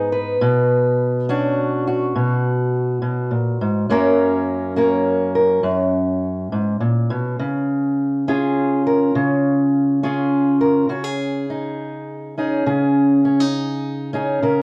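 Folk piece for solo fingerpicked steel-string acoustic guitar in a gently swaying 6/8 at 68 BPM, peaceful and unhurried, cut from a longer work. The boxy, up-front guitar ranges from F#2 to B4, moving through Bmadd9, F#, and C# before shifting at 10.9 seconds to a C#sus2 passage. A moderate large-studio reverb surrounds it, and the worn cassette sound adds a warbly pitch drift that gives the recording an aged, homespun character.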